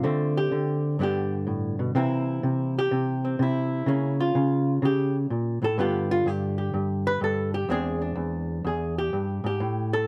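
Sophisticated and relaxed, this solo jazz excerpt swings at 126 BPM in 4/4 with a clean, dark hollow-body electric guitar played fingered and up front, its compressed tone spanning E2 to B4 over chords moving from D5 and G through C7, A7b9b13 and G7 to E7alt, captured by close, detailed microphones in light reverb.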